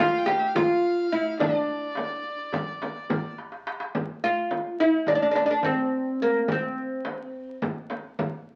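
This Turkish makam ensemble piece, cut from a longer work, moves in a straight 9/8 with a soulful, melancholic mood. A fretless, plectrum-plucked oud carries the melody up front, its double strings giving a woody, warm voice. Above it, a single bowed violin adds a close, nasal second line with light vibrato and an airy edge, then falls away at 3.3 seconds. A metal-shelled darbuka, crisp under hard hands, sits in the background beside a warm frame drum, and a drum fill at 3.4 seconds leads into a new section. The sound has the crackle of a very old 78 rpm record, softened by a wet studio reverb.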